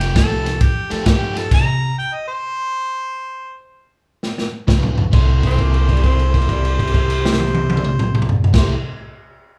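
Electric blues shuffle at 133 BPM, rollicking and soulful, in which a mellow, distant harmonica with overdrive and scooped notes carries the melody over a punchy, dark-cymbaled vintage drum kit, a woody, thumpy upright bass and a tremolo-treated overdriven semi-hollow guitar riff, until the guitar drops out at 1.4 s and the bass at 1.9 s for a stop, a drum fill at 4.2 s brings the band back, and a raspy, growling tenor saxophone adds a second line from 5.5 s beneath a long held note, all in a roomy live-band studio sound.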